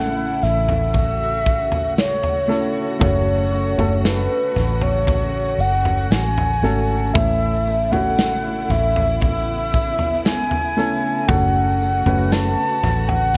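Pop ballad, heartfelt and hopeful, cut from a longer piece in a small, echo-heavy room, moving between A and F#m. An up-front, horn-like synth lead with soft attack, vibrato, chorus and tape echo carries the melody over a natural baby grand piano, lush bowed strings holding smooth sustained chords, and a dark, round, foam-muted electric bass. A mid-forward modern drum kit with punchy kick, medium-tuned snare and toms joins at 0.7 seconds, followed by a jingly, bright tambourine at 0.9 seconds, both touched with tape echo.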